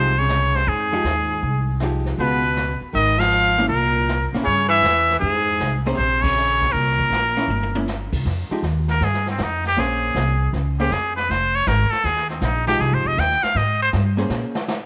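A nasal, straight-muted trumpet carries the melody over a mellow subtone baritone saxophone second line with slapback echo, a dark clean archtop guitar, and a woody, thumpy upright bass, with a distant brushed kit under dark cymbals arriving at 0.3 seconds in this cool, smoky F minor small-group swing at 158 BPM, where band accents punctuate the opening before the saxophone drops out at 7.9 seconds and the trumpet takes a solo from 8.3 seconds.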